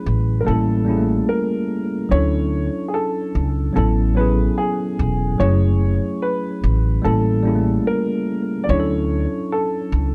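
A thumpy, woody upright bass, plucked on gut strings and sitting up front, anchors this mellow, nostalgic hip hop piece at 73 BPM, with a swung sixteenth-note feel in A major. A worn, slightly out-of-tune tine electric piano with a cassette-tape character carries the accompaniment through chords such as A7b9, Dmaj9 and F#m9, while a dark, vintage upright piano with short sustain plays the melody through a low-pass filter and tape echo. The production is warm, with light reverb, and this passage is cut from a longer piece.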